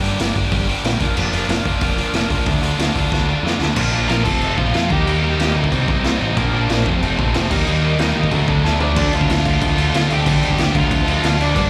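Urgent and angry, this punk rock fragment from a live club gig charges along at 185 BPM in straight 4/4, tuned slightly flat of standard pitch, with a cranked stack guitar riffing up front through overdrive and slapback echo over a very quiet, compressed distorted electric guitar, a growling overdriven picked bass and a raw garage drum kit with a boomy kick, gritty saturation, a rolled-off top and drum fills, before a double-tracked, very quiet fuzz guitar joins at 3.8 s and a dark, smooth overdriven lead guitar carries the melody in a brief phrase from 4.1 s and again from 8.8 s, the band heard through the venue's PA with club reverb as the chords move from Gm toward a closing Dm.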